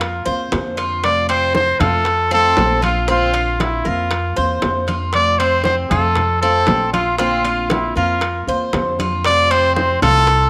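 A moderate echo-chamber reverb gives this short section of a longer Cuban son and guajira piece a relaxed, roomy glow, with a clear trumpet sitting up front and carrying the melody throughout its roughly 10.5 seconds, its pop-style tone touched by light vibrato. Beneath it, a bright, metallic Cuban tres picks arpeggios on its doubled strings, some of them octave-doubled, while a warm, thumb-plucked classical nylon-string guitar adds quieter accompaniment. A woody, dark upright bass with gut strings plays pizzicato, giving the low end a thumpy weight. Tucked into the background, tight, high-tuned bongos struck with hard hands, ringing medium-tuned congas and metal-shelled timbales keep a gentle pulse in straight 4/4. The harmony sways unhurriedly between Bbadd9 and F, lending the passage an easygoing, sunlit calm.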